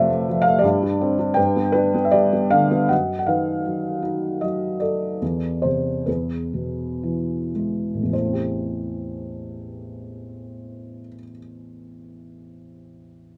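A soft, intimate felt-muted upright piano sits up front and plays alone in this melancholic, reflective classical piece in A minor, cut from a longer work, moving in a rubato 3/4 between 50 and 82 BPM and slowing down from 2.9 to 8.1 seconds as its harmonies pass through F, G, B/F# and E before settling on Am7 at 8.1 seconds, all framed by a moderate studio reverb.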